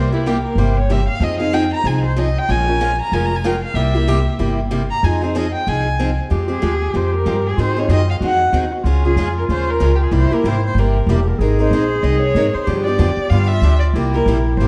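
A distant, bowed violin carries the melody with vibrato and portamento in this excerpt of bittersweet, virtuosic gypsy jazz, taking a solo spot over the first 6.3 seconds at a brisk 188 BPM swing in F minor. A bright, boxy picked steel-string guitar and a woody, thumpy pizzicato upright bass sit up front, moving through changes such as C7, Fm7 and Bbm7. At 6.3 seconds a breathy, whispered clarinet enters with a soft-attack second line, the whole set in a dark production with moderate stage reverb.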